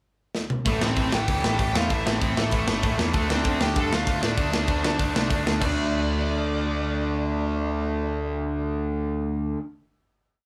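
Punk rock at 194 BPM in a straight 4/4, raw and aggressive, played live in one room with a moderate studio ambience: after a drum fill in the pickup bar, a tight metal drum kit with a mid-forward sound and rolled-off top drives a two-step groove up front until 5.7 seconds. Two picked electric guitars, one overdriven and up front, the other compressed, distorted and in the background, hammer bright eighth-note power chords from Am to Dm over a growling picked bass in eighth notes. A smooth, warm lead guitar plays a motif-based melody of call phrases, partly doubled in octaves, carrying on as the band lands on a final D5 chord at 5.6 seconds.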